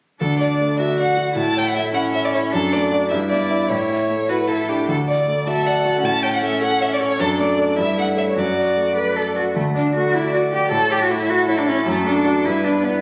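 A cheerful, lively classical-period piano trio movement in D major, moving briskly at 103 BPM in a straight 6/8, where an up-front, smooth and even bowed violin sings the melody with vibrato over a focused, rich-toned cello second line and a clear, polished concert grand accompaniment with deep bass and audible action noise, all set in a moderate scoring-stage reverb with added studio reverb, vinyl crackle and compression, captured on a phone in the room, in a fragment of about 13 seconds cut from a longer piece.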